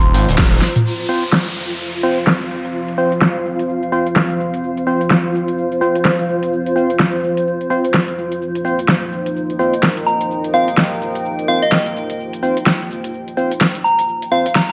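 Bouncy and swaggering, this bass house excerpt moves at 127 BPM in 4/4 with a 16th-note swing. A thick, swirling detuned saw bass, saturated and phased, bursts in briefly at the top beside a punchy overdriven electronic kick, a distant, roomy soft-mallet kit in the background and an accent at 0.4 seconds before a drum fill at 0.6 seconds. The overdriven big-room kit sits up front throughout, with a huge snare, metallic hats, cabasa, crash and toms, while a hollow, percussive organ stab with chorus and dub echo pumps with the sidechain. A cloudy granular pad blurs beneath everything, and from 0.9 seconds a resonant sawtooth pad carries sustained chords through a long filter sweep as an electronic downlifter falls away. A pure FM bell, gentle and chorused with phaser and dub echo, returns with the melody near the close, all set in a moderate digital room reverb.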